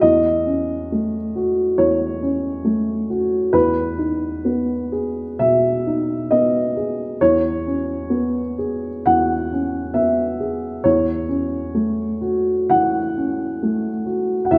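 Intimate and hopeful, this 14.6-second fragment of a neoclassical minimalist piece features a solo upright piano, mellow and woody with a boxy character, placed up front and played with rubato and uneven beats over chords moving from A6/E to Emaj7 and C#m7/E before returning to A6/E, tuned to A4 = 439 Hz and bathed in the wet reverb of a concert hall.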